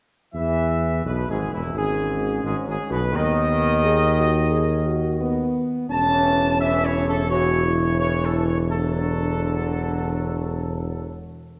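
A mellow trumpet section carries the melody up front with light vibrato, soft attacks and a smooth top, giving this triumphant, regal classical passage in E major a stately 86 BPM tread. A solo tuba anchors the bass close by, a clear, vintage-toned trombone section sustains chords in the background, and a French horn section joins the held harmony at 1.7 s as the chords move from E through B/D# and A/E to D/E. A dark production and a wet concert hall reverb, with a 1.9 s decay, surround this brief brass fragment cut from a longer piece.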